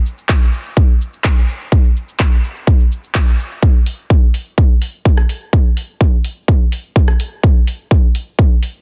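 A big-room dance drum kit of handclaps, metallic hi-hats, rim click and shaker opens this uplifting, euphoric EDM excerpt at 126 BPM in a straight 4/4, joined at 0.3 seconds by a punchy, layered electronic kick drum that sits up front, and a build-up begins at 3.6 seconds, all heard dry with little reverb in a dense, heavily limited modern master.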